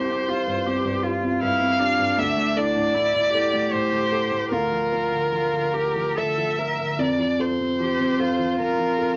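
Tender and intimate, this short excerpt of neoclassical piano and strings moves in a rubato 3/4 at roughly 69-79 BPM in F major, tuned slightly low to A4 = 439 Hz. A single bowed violin carries the melody in a rich, expressive voice, shaping its line with vibrato and portamento. Beneath it, one cello plays a smooth, even second line with its own vibrato, sitting close to the listener. A felt-muted upright piano supplies soft, mellow accompaniment from the low bass upward, with a vintage character and audible action noise that heighten the closeness. The harmony passes from Csus4 through Dsus2 and Bb/D before settling on F at 7.0 seconds, and all three instruments play throughout the 9.2 seconds. A short, wet club reverb surrounds the ensemble, and the top end is rolled off, giving the sound a gentle, darkened sheen.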